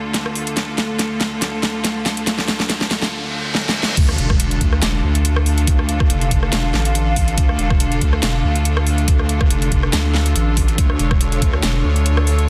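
A heavy, saturated wobble bass drives this menacing, chaotic slice of heavy wobble dubstep, arriving up front at the drop at 4.0 seconds with chorus and overdrive on its resonant, detuned growl. At 141 BPM in a half-time 4/4 feel with a light swing on the sixteenths, the piece sits in D harmonic minor on a D minor chord, opening with a build-up where drum fills from the dubstep kit, with its huge snare, metallic hats and rim clicks, push toward a reverse cymbal starting at 3.1 seconds. Underneath, a clear studio string section holds sustained, bowed chords with light vibrato and a biting edge, pumping against the sidechain, while a warbling, nostalgic lo-fi pad adds a mellow, chorused texture with its own built-in reverb. A very quiet riser and impact mark the drop, where a knocking, layered electronic kick joins the kit until 11.5 seconds. The sound is dry and dense, with a heavily limited modern master, and the clip is cut from a longer piece.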